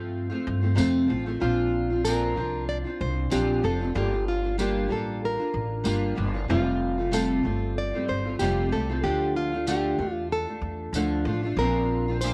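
A moderate spring reverb and a touch of studio ambience surround this carefree, easy-going acoustic pop piece, cut from a longer performance and carried by a light swing. Up front, a fresh-stringed classical nylon-string guitar plays the melody over a dark, double-tracked steel-string guitar that fingerpicks the accompaniment, while a woody, thumpy pizzicato upright bass on gut strings holds the low end. A jingly, vintage-sounding tambourine enters softly at 0.8 seconds as the chords drift from F through Bbadd9, Gm7, Fadd9 and Dm.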